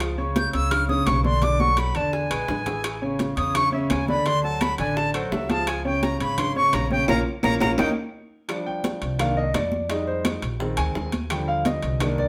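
This lively, danceable Afro-Cuban jazz excerpt opens at a brisk 170 BPM in straight 4/4, with a clear, up-front concert grand piano comping over a thumpy, woody gut-string upright bass played pizzicato, while congas, bongos, timbales and claves drive the groove. The congas ring high-tuned and the bongos sound tight under hard hands, both close and dry in the background. The metal-shell timbales ring out, and the claves click from a more distant, roomy place behind the band. At 0.4 seconds a breathy, bright silver concert flute takes the lead up front, close-miked with vibrato, a soft attack and a faintly reedy edge, moving through restless chords like Bm7, E7 and Amaj7. Drum fills punctuate the line, and a band accent at 7.1 seconds sets up the turn to Eb major at 8.5 seconds, where the deep-bassed grand piano steps forward for a solo over Cm7, Fm7 and Bb7sus4 resolving to Ebmaj7. The whole group sounds like it was caught live in one room, with a wet studio reverb adding a short glow to the mix.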